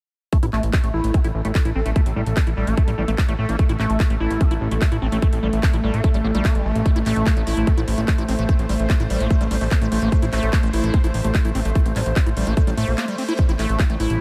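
A straight 4/4 pulse at 147 BPM drives this hypnotic, psychedelic trance excerpt in A phrygian, with a tight electronic kick sitting up front from 0.3 s and a quieter techno kit adding handclaps and metallic hi-hats, both placed in studio reverb. Beneath it, a fat analog bass built from detuned, saturated sawtooth tones plays low around A1 to Bb1 with a plucky filter and fast attack. A squelchy, resonant square-wave acid bass runs a riff above, treated with chorus, analog delay and sidechain pumping as its filter sweeps. From 1.1 s, an evolving wavetable pad of triangle voices in detuned unison holds sustained chords with a slow attack and long release, shimmering through a phaser and its own reverb while also pumping to the sidechain. The harmony opens on an A5 chord, and at 13.0 s a very quiet reverse cymbal marks a brief break before the groove carries on.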